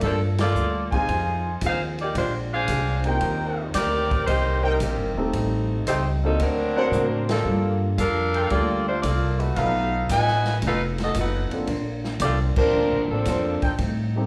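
Big band swing with an energetic, brassy mood at 113 BPM, this excerpt from a longer piece is heard as a live club gig through the venue's PA, with a bright, vibrato-laden saxophone section carrying the melody up front while a smooth-topped trumpet section punches in with stabs from 0.9 s. A woody pizzicato upright bass and a swinging drum kit with a punchy kick drive the rhythm, joined by a grand piano and a clean, compressed hollow-body electric guitar sitting in the background, with slapback echo on the horns, piano and guitar. The band hits accents together at 0.3, 7.2 and 12.5 seconds, the middle one set up by a drum fill, over rich chords such as Gm9, Bb13 and Bbmaj9.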